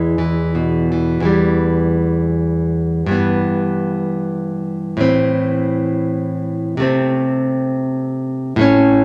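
A solo nylon-string guitar opens this tender, romantic classical piece, fingerpicked and placed up front with a bright, full-bodied tone from fresh strings. The music moves in a lilting three-beat metre, its uneven beats and rubato giving the phrasing a free, speaking quality. After a brief opening on an E chord, a new section begins at 1.3 seconds, settling into E minor harmony before shifting to A minor at 5.0 seconds. The guitar ranges from its low E string up through the middle register, and an occasional finger squeak adds an intimate, human touch. A moderate large-studio reverb surrounds the instrument with a warm sense of space, and this short passage ends at 9.0 seconds as part of a longer piece.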